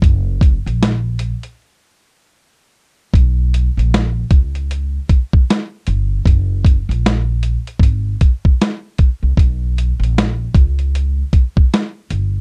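A woody, pizzicato upright bass and a compressed, pitched-down boom bap sampler-style drum kit with a thumpy kick, high-tuned snare, hi-hat and vintage 12-bit grit drive this cosy, nostalgic lo-fi hip hop excerpt at 77 BPM with a swung 16th-note feel. Both sit up front in a dark, dry mix tuned to A4 = 436 Hz, with a break from 1.6 to 3.1 seconds.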